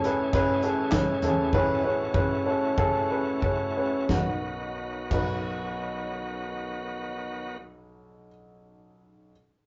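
A warm, up-front baby grand piano, a bright, shouting tonewheel organ with light overdrive and a fast rotary speaker, and a punchy, dark-toned acoustic drum kit with crash, handclaps, hi-hat, snare and toms all open this anthemic, uplifting piano-driven pop fragment in B mixolydian at 88-103 BPM in straight 4/4, slowing over its first 4.1 seconds on an Amaj7 chord before moving to B, with the drums dropping out at 5.3 seconds and the organ at 7.6 seconds, leaving the piano to ring on alone through a rough, tube-saturated rehearsal-room sound with a short, wet small-room reverb.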